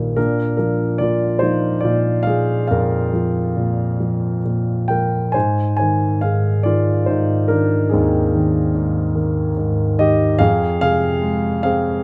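In a rubato 3/4 at 71 BPM, this melancholic, reflective classical fragment features a single dark grand piano playing alone, tuned to A4 = 441 Hz. It spans Bb1 to Ab5 with a mellow, vintage tone and long sustain, moving through Bb, Ab6 and Fm chords. The close, detailed recording places the piano up front in a light reverb, framing this lyrical excerpt.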